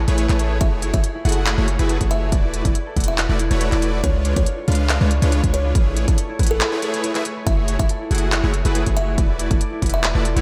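Lush and dreamy, this future bass excerpt moves at 140 BPM in 4/4 with a half-time feel and a light swing on the sixteenths, set in F# minor. A kalimba carries the melody with a woody, hollow thumb-plucked tone touched by tape echo, while a ringing, fingerpicked concert harp plays arpeggios beneath it, both sitting in the background and trailing a diffuse ambient delay on the harp. A fat, detuned sawtooth polysynth drives a bold riff with chorus and the same diffuse delay, and a deep, boomy 808-style bass with a sine body and noise layer sits up front, all of these pumping under sidechain. A trap kit supplies crisp hi-hats and handclaps from 0.1 seconds, and a hard-clipped electronic kick punches up front from 0.6 to 9.9 seconds. The harmony cycles through Amaj9, F#m9, E9sus4 and C#7b9, and the whole mix is soaked in a lush hall reverb for a dreamy sound.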